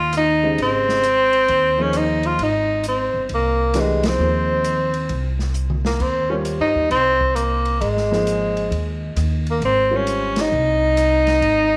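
Light reverb and a studio ambience frame this short excerpt of spiritual, searching modal jazz in Ab major, swinging in 4/4 at 133 BPM over a single Abmaj9 chord. A warm, roomy tenor saxophone with slapback echo carries the melody up front, its light vibrato and scooped notes set over woody, thumpy pizzicato upright bass and a mellow, intimate grand piano with audible action noise, while an airy acoustic drum kit with dark cymbals and a boomy kick sits low in the mix. The band hits accents at 4.0 and 10.3 seconds, and a drum fill arrives at 5.6 seconds.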